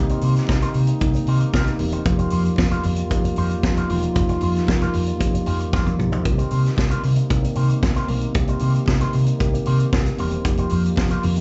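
Disco at 114 BPM with a glamorous, joyful mood, this short live-club excerpt pairs a round, punchy fingered electric bass and an up-front vintage drum kit with a punchy kick and a drum fill at 5.7 seconds. Meanwhile a mellow tine electric piano, a close-miked French horn section holding sustained chords, a bright, twangy electric guitar with wah and slapback echo, very quiet congas and a grainy egg shaker move between Cm7 and F9sus4 in light club reverb heard through the venue's PA.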